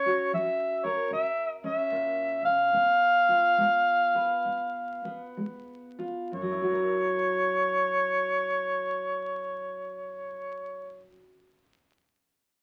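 A loping, swung 4/4 groove eases back and slows through the opening 6.3 seconds of this soulful, laid-back acoustic country blues fragment, moving from F# to C#7 and settling on F#7 as the second section begins. Up front, a mellow, vintage harmonica carries the melody with light vibrato and scooped notes in a jazz-tinged style, while a dark, full-bodied fingerpicked dreadnought guitar accompanies beneath it. A moderate studio reverb and the crackle of a very old 78 rpm record give the sound an aged, intimate character.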